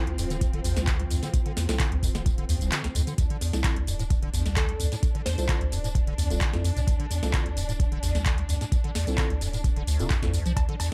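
A straight groove from an overdriven electronic kick, which drops out briefly at 2.7 seconds, and a booming analog drum machine with crisp snare, handclaps, metallic hats, tambourine and cowbell drives this hypnotic, gritty acid house excerpt, where a squelchy, resonant square-wave acid bass riff with overdrive and chorus rides over a round analog bass with tube saturation and sidechain pumping, soft detuned chord stabs with tape echo and a dark, lush bowed string section sustaining chords hover behind, and a glassy wavetable pluck flashes a brief melody with sampler grit and analog delay at 4.6 seconds, all in a dry, close mix.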